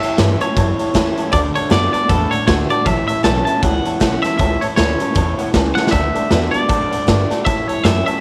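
Swung eighths in 4/4 drive this rollicking, retro rockabilly clip: a gritty, up-front garage drum kit with a punchy kick and a fill at 5.7 seconds, a thumpy pizzicato upright bass, a clean, twangy electric guitar lead with tape echo, a slightly broken-up lo-fi riff from an electric guitar through a small old amp, a full-bodied picked steel-string acoustic guitar with finger squeak, and a detuned, jangly honky-tonk upright piano in the background, set in light reverb and small room ambience.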